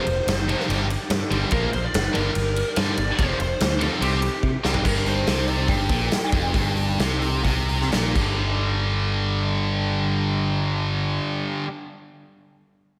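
This aggressive, driving hard rock excerpt in G minor moves in a straight 4/4 at 121-144 BPM, and the tempo slows between 4.8 and 8.4 seconds. Up front, a scooped, high-gain guitar picks out the main riff with distortion and slapback echo. A second overdriven guitar doubles the riff in the background, and a growly, picked electric bass anchors the low end. A huge arena drum kit drives the music with a punchy kick, a medium-tuned snare, toms, hi-hat, ride and crash, with fills that mark the section changes, until the drums stop at 8.3 seconds. Over the top, a lead guitar through a small cranked amp sings a warm melody with slapback echo, while a very quiet, smooth tonewheel organ with slow rotary swirl holds chords until 4.8 seconds. Lush hall reverb gives the whole mix a big arena sound.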